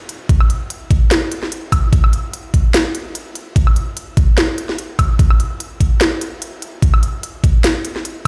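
A swung, half-time groove in 4/4 drives this bright, playful future bass excerpt, carried by a trap drum kit of crisp hi-hats, a sharp snare and woodblock that runs from 0.1 to 8.1 seconds. A knocking electronic kick sits up front alongside the kit and is the louder of the two parts. Light reverb and digital ambience give the produced sound the feel of a big sound system playing in a bare stone room, and the clip is cut from a longer piece.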